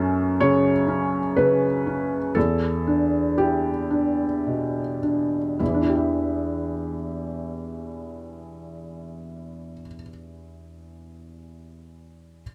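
A felt-muted upright piano, soft, mellow and intimate with audible action noise, sits up front in this longing, reflective classical fragment in a rubato 3/4, accompanying through a slowing opening that moves from F#m to Em7 before a new section arrives at 5.6 seconds, all captured live in one room with moderate studio ambience.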